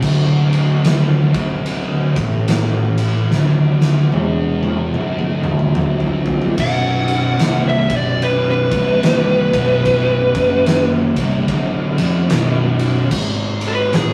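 Stoner and doom metal at a slow 73 BPM in 4/4 with a swung eighth-note feel, this ominous, hypnotic excerpt is cut from a longer piece. Two thick fuzz guitars play the riff from the start, one dark and very quiet, the other set back in the mix, with a growly, overdriven picked electric bass beneath them and an oversized low-tuned drum kit up front with a boomy kick, fat snare, dark cymbals and a pumping, big-room sound. The opening rests on a D5 chord, and the drums play a fill from 3.3 to 6.6 seconds. At 6.6 seconds the music settles into B dorian over a Bm chord as a distorted fuzz lead guitar takes a solo, sitting louder and more forward than the rest, before the harmony shifts to B7(no3)/G# at 13.1 seconds. The whole has the gritty feel of a rough rehearsal-room recording with tube saturation and a moderate stone-room reverb.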